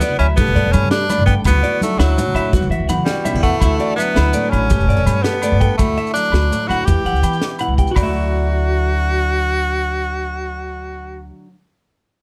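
An edgy, forceful tenor saxophone leads up front with vibrato and scooped notes in this sunny, carefree highlife guitar band excerpt in 12/8, over fingerpicked nylon-string guitar, bright, twangy electric guitar arpeggios with slapback echo, woody pizzicato upright bass, and a tight funk drum kit with a high-tuned snare, while ringing congas drop out at 3.6 s and background agogo bells and grainy maracas fall away with the drums around 8.0 s, leaving the saxophone, guitars and bass in light reverb.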